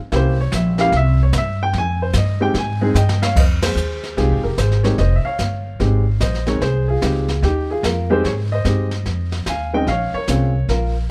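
Jazz piano trio in a moody, late-night F minor, swinging at 148 BPM in this cut from a longer piece: an intimate, vintage-toned upright piano with audible action noise and plate reverb carries the melody and solos through 3.4 s over C7b9 and Fm7 harmony, while an up-front, woody pizzicato upright bass anchors the low end and a brushed kit with dark cymbals and a boomy kick plays a fill at 3.0 s that leads into a band accent at 3.6 s.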